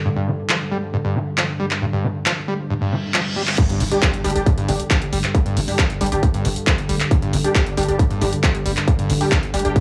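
Relentless and dark, this cut from a longer driving peak-time techno piece opens on a deep, moody pad droning in the background beneath a squelchy, resonant acid bass riff with distortion and analog delay, soon joined by an up-front, tape-toned analog drum machine with crash, handclaps and hi-hat. A very quiet reverse cymbal from 2.9 seconds leads into the drop at 3.6 seconds, where an overdriven, layered kick lands with a soft impact, followed by a thick, saturated sub bass and aggressive, bright detuned rave stabs with ring modulation, chorus and delay. Sidechain pumping breathes through the pad, basses, stabs and the drum machine's cymbals and hats, all captured as a gritty hardware recording with a cassette-tape grain and light reverb.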